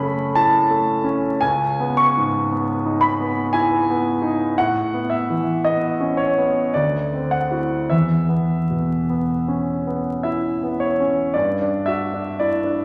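This is impressionist classical solo piano, a luminous, hazy short cut from a longer piece, moving in a relaxed three-beat metre with a free, rubato feel. A concert grand plays alone from the opening to 12.8 seconds, its tone clear and natural, with a deep bass, long sustain and an up-front presence across a range from C#2 to C#6. The harmony drifts through colourful extended chords, opening on F#m7 and passing through C#m9, Aadd9 and D9 before settling briefly on an open E5. At 11.3 seconds a new passage begins on a G major seventh colour, hinting at a fresh direction just as the recording cuts off. A lush concert-hall reverb surrounds the piano, while vinyl crackle and a faint mains hum add a worn, dreamy patina to the sound.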